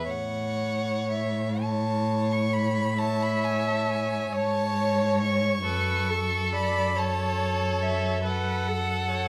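Set in a recital hall with a moderate reverb, this tender, lyrical fragment of a slow romantic string quartet movement unfolds in a flowing 12/8 with rubato. Two violins, one carrying a high, smooth melody and the other a second line beneath it, share a rich, vibrato-laden tone over an up-front bowed cello, whose soft attacks and expressive portamento anchor the bass. A clear viola joins the accompaniment at 3.0 s, and the harmony moves from A to F#m at 5.7 s.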